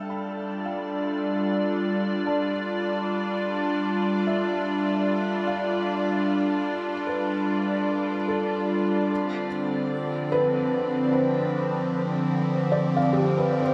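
Bathed in a long, shimmering reverb, this serene, weightless ambient excerpt at 75 BPM in 3/4 centres on an up-front, morphing, detuned wavetable pad with chorus, which sustains chords that move from G7 to Dm7 at 9.1 seconds, while a soft, felt-muted upright piano with audible action noise plays delayed arpeggios and a glassy, dry glass harmonica adds background texture, both fading in across the full 13.7 seconds.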